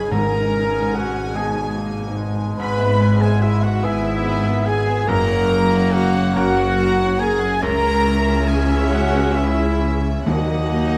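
This cinematic, emotional film score excerpt moves slowly and freely in 6/8 at 48 BPM in G# minor, its bittersweet, longing mood carried by a floating, sul tasto symphonic violin section on the melody over a progression that shifts from G#madd9 through E/G#, F#, C#m and D#m. An airy silver flute, a lightly vibrato oboe, a pure studio violin section and a clear clarinet trace second lines in the background, while a brilliant, intimate grand piano with audible action noise and a very quiet, woody viola section fill out the accompaniment, and a distant, roomy French horn section holds sustained chords. A very quiet, ringing harp plays arpeggios above a bass of clear chamber double basses and dark, smooth-topped cellos, and articulate hard-mallet timpani sound from 0.1 to 1.3 seconds and again from 10.3 seconds, all set in a moderate scoring-stage reverb.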